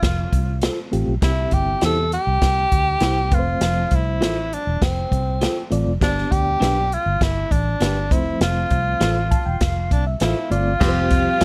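Uplifting and joyful, this uptempo 1960s-style soul excerpt at 100 BPM in a straight 4/4 puts a breathy, whispered tenor saxophone melody with scooped notes up front over a round, foam-muted fingered electric bass and a swinging big-band drum kit with dark cymbals and a punchy kick; slightly broken-up electric guitar stabs arrive at 0.6 s, a reedy electric piano with fast tremolo joins at 0.9 s and later plays a fill, and at 10.8 s a lush, woody string section, an edgy saxophone section and a very quiet tonewheel organ with slow rotary swirl appear, all within a dark production and light reverb.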